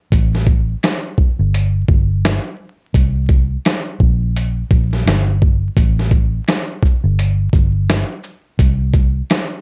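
Dark and moody, this short boom-bap hip-hop cut rides a swung sixteenth-note feel in 4/4, with the whole recording dusted in vinyl crackle and kept dry. A sampler-style drum kit sits up front, its compressed, gritty sound built from a thumpy kick, a medium-tuned snare, hi-hat and shaker, re-recorded in a large room. Beneath it, a vintage muted fingered electric bass holds the low end between G1 and C2, its tone dark, amped, foam-muted, round and punchy, also placed up front. Both parts come in together at 0.1 seconds, and the bass drops out at 9.2 seconds while the drums carry on to 9.5 seconds. The passage repeats the same section twice, the second pass starting at 5.8 seconds, and it is cut from a longer piece.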